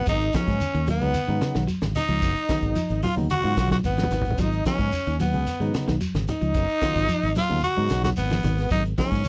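A raspy, gritty tenor saxophone leads up front from the very start of this hypnotic, funky afrobeat groove, shadowed in the background by a clear, smooth-topped trombone with vibrato. A punchy fingered electric bass anchors a tight, small-room funk kit with a high-tuned snare and a fill from 3.3 to 4.4 seconds, while twangy clean guitar arpeggios and a barky, lightly overdriven tine electric piano sit further back. Bright congas enter at 0.3 seconds and a grainy, distant shekere adds texture, captured in a dry, close 1970s-style studio recording with light reverb.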